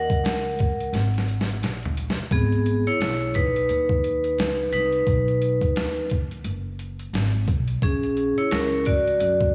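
A dreamy mix soaked in lush hall reverb frames this cool, mellow jazz-hop fragment, its swung boom bap groove cut from a longer piece. Up front, a bright, ringing vibraphone played with medium hard mallets and its motor off carries a solo throughout over a dark, woody pizzicato upright bass. A gritty, pitched-down sampler-style kit with a thumpy kick and medium-tuned snare comes in at 0.1 seconds and plays a fill from 0.9 to 2.3 seconds. Beneath it all, the harmony moves from a rootless D#m7 through G#sus2 to G#m, B and A#aug.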